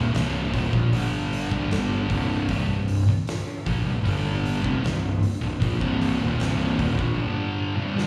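A dark fuzz guitar riff sits up front in this ominous, brooding stoner and doom metal excerpt in straight 4/4, paired with a second, warmer guitar in the background, both distorted and carrying a slapback echo. Beneath them, a bright, growly fingered bass with overdrive and tube saturation punches forward until it stops at 7.2 s for a short break, while an oversized low-tuned kit of boomy kick, fat snare and hi-hat enters at 0.1 s with a gritty, saturated, pumping big-room sound. The mix sounds like a live gig heard through the venue's PA, with a blend of recital hall and small room reverb.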